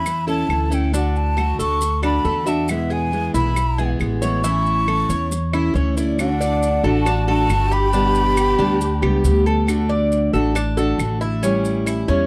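A dry, close 1970s-style studio sound with light reverb frames this warm, sunny Cuban son and guajira excerpt at 137 BPM in D major, where a breathy, hollow jazz flute with vibrato carries the melody until 9.5 s over a full-bodied fingerpicked steel-string acoustic guitar, a metallic, double-strung Cuban tres playing arpeggios, an up-front, thumpy gut-string upright bass, background woody claves and grainy maracas, while a dark, bowed chamber violin section adds a second line from 6.2 s to 9.5 s.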